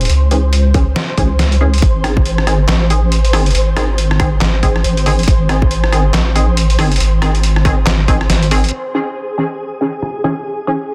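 A dense, heavily limited mix with light reverb frames this brooding, meditative deep dubstep excerpt, cut from a longer piece, moving at 139 BPM in a swung half-time feel in C# harmonic minor. A deep, soft wobble bass with chorus sits up front, its dark, detuned sine-and-triangle tone sustaining between G#1 and C#2 until 8.7 seconds. Underneath, a tight, layered electronic kick with small room ambience joins the trip hop sampler-style kit. The kit's gritty, pitched-down snare, hi-hat and crash are muffled by low-pass filtering, alongside rim click and handclaps, all carrying a tape-warm character. Filtered dub chord stabs, muted yet bright with a warbling vintage character, pluck through lush chorus and dub echo over C#m and G#, their filter sweeping across the passage. Above it all, a flickering granular texture with slow attack and long release hovers in its own reverb, lingering as the bass drops away and the music settles back onto C#m at 8.7 seconds.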